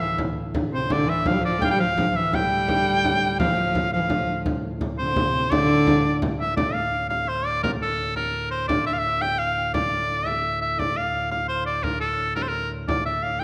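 Ancient and driving, this medieval dance in 6/8 is taken from a longer piece and carries a straight, steady feel. A bright shawm leads the melody from start to finish, played up front in a folk style with vibrato, scooped notes and a smooth top to its tone. Beneath it a clear viola da gamba bows a second line with a biting, reedy gut-string sound, light vibrato and ringing fretted notes, dropping out at 6.2 seconds, shortly before the dance moves into its second half. A chamber organ sustains a low drone on a nasal cornet solo stop, its chamber voicing touched with chiff, while a deep, large frame drum enters at 0.2 seconds with a small-room acoustic quality. The whole ensemble sits in a reverberant recital hall, giving the dance a lingering, spacious ring.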